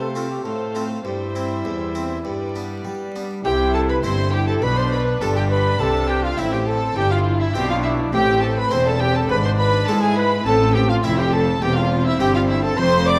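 Baroque-style concerto movement in C major at 103 BPM, lively and festive, where a dark solo trumpet shares the melody with a close, gut-string chamber violin section above a background second violin line and viola accompaniment, a bright harpsichord with one set of strings, a nasal, rich cello section and a double bass section entering at 3.5 seconds, all in a wet recital hall with vinyl crackle, cut from a longer piece.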